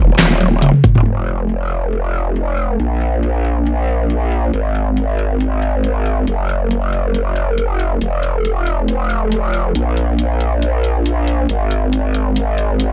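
A growling, saturated bass with a formant-filtered wobble sits up front from the start of this menacing half-time heavy wobble dubstep clip, joined at 0.2 s by an overdriven, layered drum kit of deep snare, handclaps, hi-hat and toms under low-pass filtering, with a punchy electronic kick landing at 0.8 s inside a drum fill before a filter sweep on the drums takes hold from 1.1 s in a dry, aggressive mix.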